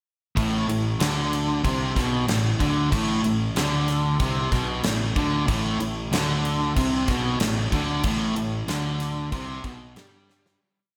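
A big arena sound with a moderate concert-hall reverb frames this short, heavy and aggressive hard rock piece at 94 BPM in A minor, built on a single Am riff from 0.4 seconds. A biting overdriven guitar plays the single-note riff up front while an overdriven semi-hollow guitar with slapback echo sits in the background, and a dark, round fuzz bass drives eighth notes that double the guitar riff. A polished, gated 80s drum kit with bright cymbals, a medium-tuned snare and a tight kick holds a big rock groove up front, ending on a drum fill at 10.3 seconds as the whole piece fades out from 8.0 seconds.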